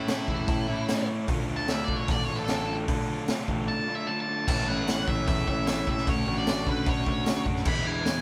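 A raw garage drum kit with a boomy kick, high-tuned snare and dark cymbals drives this carefree, upbeat indie rock excerpt in straight 4/4, with a faint jingly tambourine, a round fuzz bass in the background, a bright crunchy overdriven guitar riff and a clean, fingered guitar riff in spring reverb, a very quiet shimmering pulse-width pad holding sustained chords, and an up-front octave-fuzz lead guitar soloing until 4.5 seconds as the chords move from A and Dm to Amaj7, Dmaj7 and E7, all played live in one room.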